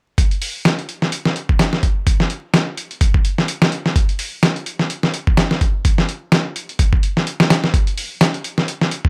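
A swung sixteenth-note breakbeat groove in 4/4 runs from 0.2 to 9.1 seconds, carried by a dusty, sampler-style soul drum kit of hi-hat, thumpy kick and medium-tuned snare. The raw, energetic kit sounds compressed and gritty, re-recorded in a small room and placed up front, with little reverb and a layer of vinyl crackle. This is a short cut from a longer piece.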